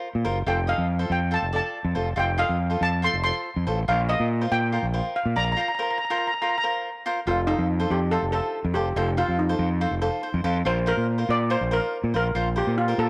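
A crisp, picked acoustic cavaquinho opens this carefree, sunny calypso fragment, cut from a longer piece, joined almost at once by a growling fingered electric bass whose overdriven, amped tone sits up front. From 0.5 seconds a metallic, shimmering steel pan played with hard rubber sticks takes the lead, close-miked, dry and full, over chords moving between F and Bbsus2, with an F7 opening the repeat of the main section. The cavaquinho adds a brief fill at 10.0 seconds, and the whole is set in light reverb and small room ambience.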